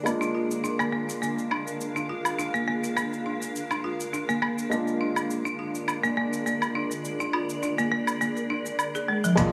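A dark, felt-muted upright piano under a filter sweep and a blurred, detuned granular cloud pad open this mystical, meditative organic downtempo passage, both pumping against the beat, as smooth tape-warm electronic woodblock, cabasa and hi-hat bring a light 16th-note swing and a dry, rustic hard-mallet folk marimba sits up front with delayed arpeggios over a sustained Bb7 in a lush hall reverb, until a woody pizzicato upright bass, a very quiet deep electronic kick and a faint impact arrive at 9.4 seconds just as the cut ends.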